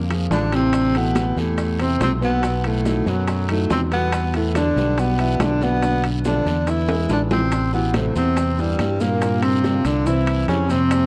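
A straight 4/4 Afro-Cuban jazz groove, fiery yet sultry, rides on distant, ringing high-tuned congas, round low bongos, metal-shelled timbales, raspy guiro and grainy maracas, while a dark, punchy fingered electric bass sits up front beside a close-miked tenor saxophone carrying the melody with vibrato, shadowed by a mellow baritone saxophone line and a woody upright piano with audible action noise, with tape echo on several parts and spring reverb across a cassette-toned, echo-heavy mix, and a drum fill at 6.9 seconds leading into a new section at 7.5 seconds.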